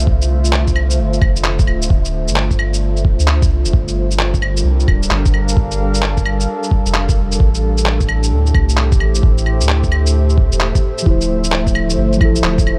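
A warbling, detuned pad opens this future garage excerpt, its slow-attack chords drifting through chorus and built-in reverb while a deep, round dub sub bass sits beneath, both pumping against the kick. The drums are sampler-style and muffled, with a thumpy, pitched-down kick and a tape-softened layer of shaker, handclaps and claves set in a small room, all riding a swung 4/4 groove. The mood is rainy and wistful, the chords moving from Dm9 to Gm9 to Am7 and back to Dm9 at 11.1 seconds. Just before that return, at 11.0 seconds, muted felt-like synth keys enter, dark and intimate, roughened by 12-bit sampler grit and trailed by digital delay. The overall sound is close and dry, the nostalgic lo-fi haze coming from the pad itself rather than the room.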